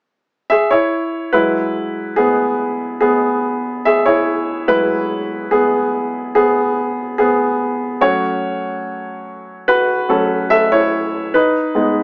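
Pop in E major at 72 BPM in a straight 4/4, this short excerpt from a longer piece carries a hopeful, heartfelt mood. Its only instrument is a clear, woody upright piano sitting up front, entering at 0.5 seconds and playing in an accompaniment role across a range from F#3 to E5. After an opening E chord, the piano takes a solo from 1.3 seconds onward over Eadd9, then moves to F#m at 8.0 seconds and G#m near the close at 11.3 seconds. Light reverb surrounds it, and the overall sound has a small-speaker character. The tuning sits slightly above standard pitch, at A4 = 441 Hz.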